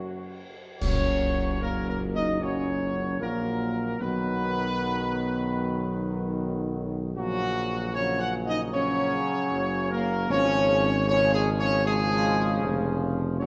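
Classical ceremonial fanfare, triumphant and solemn, in which a mellow trumpet section with light vibrato carries the melody up front over sustained chords from a smooth-topped French horn section in the background and a present, soft-attacked trombone section, while a solo tuba enters on the bass at 0.8 seconds alongside dark clash cymbals and concert bass drum that mark a brief band accent and fall silent at 2.4 seconds, the whole fragment sitting in a wet scoring-stage reverb with a warm production.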